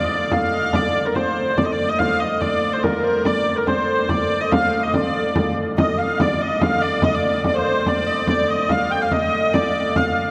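A driving, mysterious medieval dance in 3/4 at 143 BPM opens with a nasal, reedy wheel-bowed hurdy-gurdy carrying the melody up front in D phrygian, over a second, dark and woody hurdy-gurdy holding a low drone. A very quiet classical-style oboe with a clear tone and light vibrato plays a second line in the same register as the melody. At 0.3 seconds a close, dry frame drum enters, played with soft hands and sitting up front. When the second section arrives at 5.8 seconds, a mellow tenor recorder joins in the background with an airy, hollow sound and a touch of chiff, adding another second line. The recording sits in a wet cathedral reverb with a 5.3-second decay, tuned to A4 = 444 Hz, and is cut from a longer piece.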